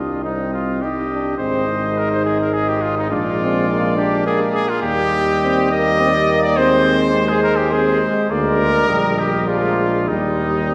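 Classical brass quintet music, solemn and grave, moves at 104 BPM in a rubato 3/4 in E-flat major: a warm trumpet carries the melody, an up-front second trumpet with light vibrato and a smooth top plays the second line, a clear French horn and a distant trombone with light vibrato in the background supply accompaniment, and a mellow tuba holds the bass, the five parts sounding together for the whole 10.7 seconds of this cut from a longer piece, bathed in wet church reverb as the harmony moves from C minor through A-flat and B-flat seventh to settle on E-flat.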